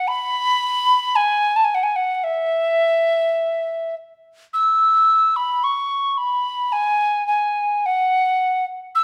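Celtic folk, wistful and pastoral, in which a lone wooden whistle with a hollow, pure, straight tone and soft attack sits up front, playing a slow, rubato line in E major at around 51-57 BPM between E5 and E6 for this 9-second fragment of a longer piece, carried by moderate reverb from a large studio room.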